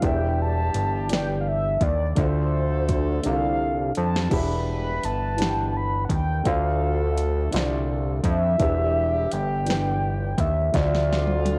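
A fat, detuned analog bass sits up front in this slow six-eight R&B passage at 56 BPM, trading between Em7 and Dm7 under a yearning, late-night mood. A round, horn-like synth lead with chorus and vibrato carries the melody, while a dark, intimate baby grand piano with audible action noise and a tight, mellow horn section in octave doubling fill in stabs and accompaniment. A produced electronic drum kit with a fat snare and metallic hats, colored by cassette tape, adds fills at 3.2 and 10.7 seconds, all set in light reverb with the character of a home cassette recording cut from a longer piece.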